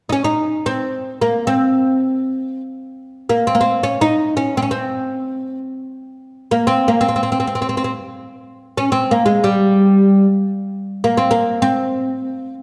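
In free time, a lone fretless oud plays a longing, hypnotic line in C makam kurdi from 0.1 to 12.5 seconds, staying between G3 and Eb4 in this fragment of a longer Turkish makam piece. The plectrum-plucked double strings sound woody and up front, while a wet recital hall reverb and a dark, warm production surround the instrument.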